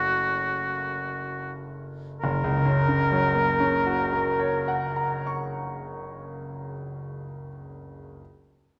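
This is a romantic classical excerpt for oboe and grand piano, taken from a longer piece, with a melancholic, solemn mood in 3/4 and a flexible, rubato feel that slows through its opening bars. The oboe carries the melody in a narrow middle register, its warm tone lightly touched with vibrato and smoothly rounded at the top, sitting up front as the solo voice. The concert grand supplies the accompaniment across a far broader span, sounding bright and brilliant, with deep bass and a present, forward placement. The harmony moves from a minor chord to a major one at 2.2 seconds, marking the shift into a second section. The oboe stops at 5.6 seconds, leaving the piano to continue alone until 8.2 seconds, all within a wet recital hall reverb.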